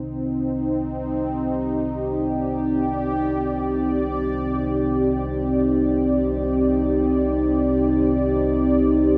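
A sweeping, resonant synth pad sits up front in this short dark ambient drone, holding sustained chords built on detuned sawtooth and sine tones with a sub octave, a filter swell and a slow attack, its bright, evolving tone thickened by chorus and a shimmer reverb. Beneath it, a deep, rumbling drone fades in across the full 9.2 seconds, its warbling, vintage character drawn from triangle and sawtooth colours, softened by subtle chorus and its own reverb. Both parts hold a single Cmadd9 harmony in free time, leaving the mood desolate and unsettling. A cavernous, cathedral-like reverb with a long 5.4-second tail surrounds the pair, and the clip is cut from a longer piece.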